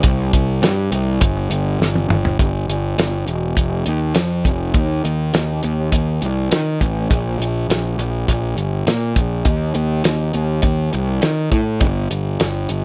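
Classic rock at 102 BPM in a straight 4/4, this gritty, swaggering passage pairs a dark, round fuzz-driven picked electric bass, overdriven and up front, with a damped 70s acoustic drum kit whose fat snare and tight kick sit just as close. The kit's hi-hat, tambourine and toms add color, and a drum fill from 1.8 to 2.4 seconds launches a new section at 2.4 seconds that carries on to the end. The sound is dry, with little reverb, keeping both parts tight and immediate.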